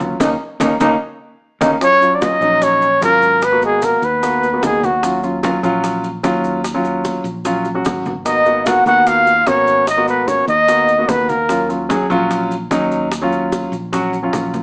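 A dark, breathy trumpet carries the melody up front in this fiery, driving Afro-Cuban jazz excerpt, joined by a gritty, growling trombone in the background, while a deep-voiced concert grand piano, a round fingered electric bass, ringing low congas, very quiet bongos and grainy maracas keep the groove churning under moderate studio reverb and a small-speaker sound, with a band accent, piano fill and drum fill leading into the trumpet's entry at 1.8 seconds.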